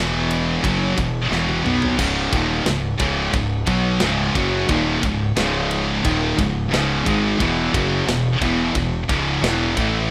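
Heavy metal excerpt at 89 BPM with a dark, heavy mood, where an up-front, double-tracked fuzz guitar riff stands ahead of two bright, picked high-gain guitars sitting in the background, all over a round, punchy fingered bass with overdrive, while a tight acoustic drum kit with a medium-tuned snare and rolled-off top enters at 0.3 seconds on kick, snare, toms, crash and ride, throwing in a fill at 1.3 seconds as the harmony moves between E5 and C#5 in a rough home-demo mix with small room reverb.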